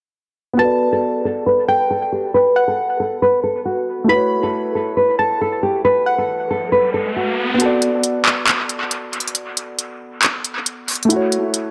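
A half-time trap pulse in 4/4 shapes this dark, eerie hip hop excerpt, though the drums hold back until 7.6 seconds. It opens with a mellow concert grand piano with deep bass accompanying a thumb-plucked, classical-toned nylon-string guitar melody. Both sit up front behind a low-pass filter and dub echo, while a filter sweep runs through the opening section. A soft, round synth pluck with chorus traces a high second line above them until 6.7 seconds, as the harmony moves between Bm7 and A6. An electronic riser leads into the second section, where a produced trap kit enters with handclaps and crisp hi-hats, also carrying dub echo. Light reverb and a small room ambience frame an echo-heavy mix that feels dark and eerie.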